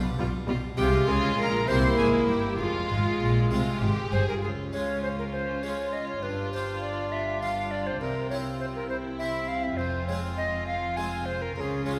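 Dramatic and stormy, this baroque-style concerto movement in F minor unfolds in 6/8 at 67 BPM with a straight feel, cut from a longer piece. A brilliant, full-voiced French-style harpsichord opens alone at 0.0 s, and the string sections join almost at once: a close, expressive violin line, a smooth, distant viola part, a dark, woody cello section sitting lush in the background, and a focused double bass anchoring the low end. From 0.8 s a tenor recorder carries the melody up front, its airy, tongued tone marked by chiff and vibrato, joined by a very quiet violin section with a smooth top. The harmony moves from G7/B through Fm and C7 before the second section arrives at 4.4 s, shifting through Db, G5 and C back to Fm. The ensemble sits in a reverberant recital-hall acoustic, as if captured in a church or concert hall.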